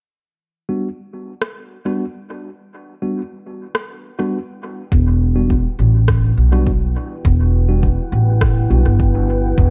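A mellow, clean tine electric piano opens this meditative, hazy ambient dub cut in E minor at 103 BPM, its stabs softened by a low-pass filter and trailed by dub echo, soon joined by an overdriven electronic rim click carrying studio reverb and echo of its own. A deep, dark pad of detuned sawtooth and sine layers with a sub octave fades in slowly on a sustained Em7, thickened by chorus and reverb. At 4.9 seconds a woody, growly upright bass sits up front alongside a layered, overdriven electronic kick.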